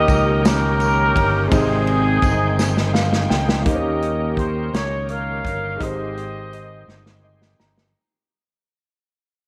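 Heard through a moderate echo-chamber reverb with studio ambience, this jubilant, uplifting slow gospel cut from a longer piece moves in 6/8 at 56 BPM in Ab major, alternating between Eb7 and Abmaj7 as it fades out from 3.7 s. A mellow, softly attacked horn section carries the melody up front with light vibrato, over a punchy natural country drum kit on hi-hat, kick, snare and ride and a bright fingered electric bass. A woody upright piano and a shouting tonewheel organ, lightly overdriven with key click, slow rotary speaker and chorus vibrato, sit in the background, while a distant, jingly tambourine plays until 3.3 s, and the drums and piano each take fills from 2.6 s and again near the end.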